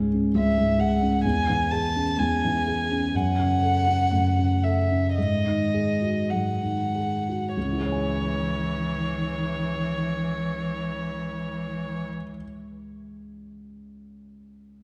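Heard in a reverberant concert hall, this excerpt from a slow, elegiac romantic movement for piano trio places a mellow, vintage-toned grand piano up front, its action noise audible as it carries the accompaniment in 4/4 with a rubato feel that slows through the opening 7.6 seconds. From 0.4 seconds a single violin, played sul tasto with light vibrato and a smooth top, sings the melancholic melody close and intimate, while a warm cello adds a second line beneath it with vibrato and expressive portamento. The strings stop at 12.1 seconds, leaving the piano alone to the end.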